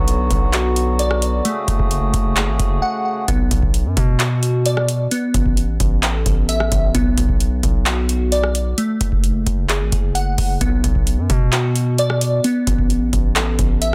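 Hard-hitting, menacing trap in B dorian at 131 BPM with a half-time feel, cut from a longer piece, opening on a reedy, breathing pedal harmonium holding sustained chords that stops at 3.3 seconds as the music moves through Bm, F#madd9 and Asus2. Glassy, detuned digital keys play dark arpeggios through chorus and digital delay, while a distorted, aggressive 808-style bass with a noise layer sits up front. A booming analog drum machine with a deep kick, metallic hi-hats, handclaps and rim clicks drives the track, dropping out briefly from 2.8 to 3.3 seconds, all within digital ambience and a dense, heavily limited modern master.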